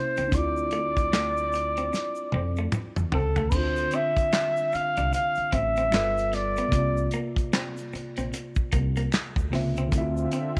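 Sultry and smooth, this neo-soul R&B cut from a longer piece sits at 75 BPM in 4/4 with a swung sixteenth feel in D minor. A soft-attack flugelhorn carries the melody with vibrato and a slapback echo, sounding distant and roomy yet up front, until it drops out at 7.1 seconds. Beneath it, a worn, slightly out-of-tune tine electric piano lays down mellow Dm9, G9 and C9sus4 chords, while a clean, compressed hollow-body jazz guitar picks a second line and a woody pizzicato upright bass with steel strings anchors the low end. A tight, dark-cymballed soul kit in a small room, with rolled-off top, plays a fill from 1.9 to 3.5 seconds, backed by a close, dry egg shaker and finger snaps tucked into the background. At 9.9 seconds a bright, detuned sawtooth analog pad with chorus and tremolo arrives on the return to Dm9, all set in a studio ambience.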